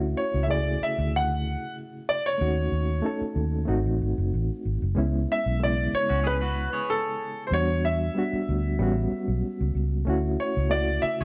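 Soul at 94 BPM with a gentle 16th-note swing, romantic and smooth: a reedy, slightly out-of-tune electric piano with fast tremolo and a round, punchy muted fingered bass carry the harmony from Dmaj9 through C#m7 to Dmaj7, while a clear concert grand piano sings the melody from 0.2 seconds and a twangy, slightly broken-up electric guitar riff joins at 6.1 seconds, all bathed in light reverb in this short cut from a longer piece.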